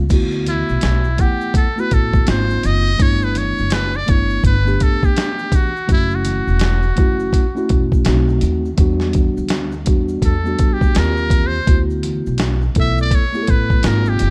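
Jazz-hop excerpt at 83 BPM in D major with a swung 16th-note feel, warm yet cool in mood, where a buzzy, breathy trumpet with metal mute enters at 0.5 seconds to solo with light vibrato and scooped notes over a mellow tine electric piano, a woody pizzicato upright bass, a gritty, compressed sampler-style drum kit with a thumpy kick and fat snare sitting up front, and very quiet, distant maracas and congas, all in a small room ambience.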